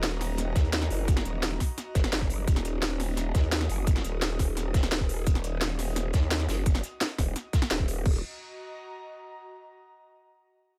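A growling, wobbling bass with chorus and overdrive opens this aggressive, futuristic dark technical drum and bass excerpt in Eb minor at 172 BPM, alongside an up-front kit of cracking snare, crisp hats and crash, with a gritty, saturated breakbeat kit with a rolled-off top tucked in the background. A tight electronic kick arrives at 0.6 seconds, while an airy, breathy pad with sidechain pumping sits behind the groove. The bass and drums stop around 8.1 seconds, and the mellow pad carries on alone until 9.4 seconds in a dry mix.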